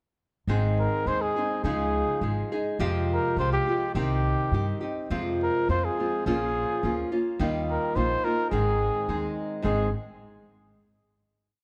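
A mellow, up-front trumpet with a light vibrato and a smooth top enters at 0.8 s, singing a punchy, classical-style solo of short song-like phrases in this festive, romantic mariachi piece in Ab major at 105 BPM in 2/4. Beneath it, a bright, fingerpicked nylon-string guitar strums open folk chord shapes through a progression from Ab through Dbadd9, Fmadd9, Cm, Fm, Bbm and Ebadd9 back to Ab, while a woody, growly pizzicato upright bass thumps root and fifth on the main beats. Light reverb and a dark production frame the short piece, which settles on a final chord at 9.6 s.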